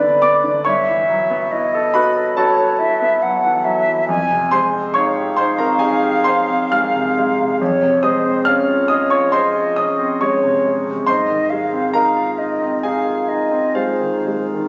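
Classical impressionist duo in a luminous, pastoral mood, moving at a rubato 69 BPM in 4/4 and settling into Ab major from 4.1 s through lush harmonies such as Fm9 and Dbmaj7/F. The concert flute carries a pure, expressive melody with gentle vibrato and soft attacks, while the clear, intimate baby grand piano sits up front in accompaniment, its natural tone carrying audible action noise. Captured on a phone in a reverberant recital hall, the compressed sound has a dulled top end, and in this brief fragment of a longer piece the flute drops out at 14.5 s, leaving the piano to finish at 14.7 s.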